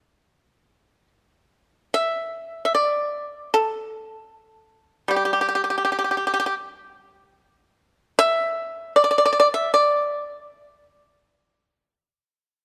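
A solo pipa, plucked with fingerpicks and sitting up front in close, detailed miking with light reverb, opens this elegant, serene Chinese traditional excerpt at a rubato 76 BPM in 4/4, its dry, percussive tone ranging from G3 to E5 and moving into a new section at 1.9 seconds that carries through to 12.6 seconds.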